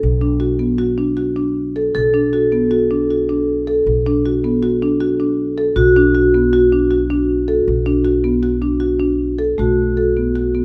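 A pizzicato upright bass with steel strings plays a low B from the start, joined at 0.2 s by up-front, woody, round marimba arpeggios under soft mallets on rosewood bars, and at 1.9 s by an airy, ringing vibraphone second line with medium motor vibrato, in this urgent, hypnotic contemporary chamber excerpt in 5/4 at 157 BPM in B minor, resting on Bm7 before moving to B5 at 9.6 s under light reverb.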